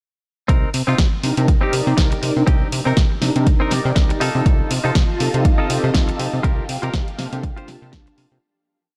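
A short, groovy and nostalgic piece of filtered disco house at 121 BPM in C dorian starts at 0.5 seconds with a dry, overdriven four-on-the-floor kick up front, punchy snare and bright programmed hats from a house drum kit, a very quiet tambourine, a funky octave-jumping analog bass with tube saturation, and a twangy, clean electric guitar chord rhythm, all moving over Cm7, F7/C and Gm7/C with a 16th-note swing. Mellow synth brass, round and detuned with chorus, phaser and cassette tape colour, joins with a rhythmic chord riff at 1.2 seconds, and a swirling phased string machine adds sustained pad chords from 4.5 seconds. Sidechain pumping and low-pass filtering shape the guitar, bass, brass and strings, and the groove fades out from 5.8 seconds in a light reverb.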